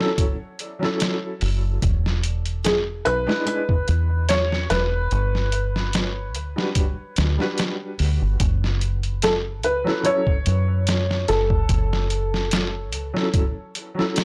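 Felt-muted upright piano opens this cinematic, melancholic trip hop excerpt at 73 BPM in F# minor, its soft, intimate melody carrying dub echo over a boxy piano accompaniment with tremolo, low-pass filter and tape echo, beside a compressed, pitched-down sampler-style drum kit with a thumpy kick, before a dark, round, foam-muted fingered electric bass enters at 1.4 seconds and a filter sweep colours the felt piano from 8.4 seconds, all in a dry, gritty recording with transformer saturation and studio reverb.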